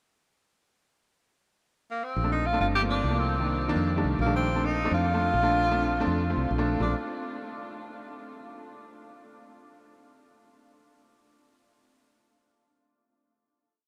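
A huge, wet reverb surrounds this short Afro-Cuban jazz piece, placing the band in a vast, echoing space. During the pickup bar, the tenor saxophone enters at 1.9 seconds with a clear jazz solo voice, rich in vibrato and scooped notes, building its melody from short call phrases; it sounds distant and roomy yet still sits up front. At 2.2 seconds the concert grand piano and fretless electric bass join. The piano plays smooth, vintage-toned syncopated chord stabs in rootless voicings, with short sustain and a deep low end. The bass is woody, dark, growly and round, a direct, amped hollow-body tone carrying a tumbao that anticipates the chords. The lively, danceable straight-feel groove moves from Bbmaj9 through Gm11, Cm7 and F13 and back to Bbmaj9, with the parts ending at 6.9 seconds as a final chord closes the piece.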